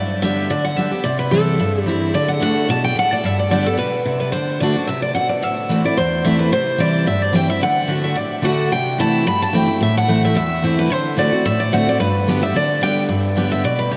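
Soaked in a huge, dreamy reverb, this short bluegrass cut from a longer piece feels driving and lively, with a swung eighth-note lilt. Two picked steel-string dreadnought guitars sit up front, both bright and full-bodied: one carries the high melody while the other supplies the low accompaniment from start to finish. The harmony moves through G, C and D, then shifts at 4.3 seconds to a passage colored by Am, C6 and D7 before settling back on G at 12.0 seconds.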